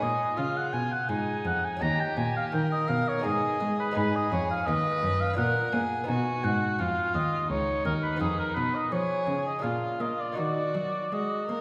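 Set in a straight 3/4 at 84 BPM, this radiant, dance-like baroque-style sonata movement with continuo is cut from a longer piece and runs for 11.6 seconds. A solo violin carries the melody with focused, bowed tone, vibrato and a smooth top, while a warm oboe, sitting up front with light vibrato, sings a classical-style second line above it. Beneath them, a rich, expressive cello plays the bass with vibrato and portamento, and a delicate fingerpicked lute with gut double strings, some doubled at the octave, fills in the accompaniment. The harmony opens on G#m and D#7, moves through Bb and B, and reaches Ebm by 10.4 seconds. A church or concert hall lends a wet reverb with a long 2.2-second tail that surrounds the whole ensemble.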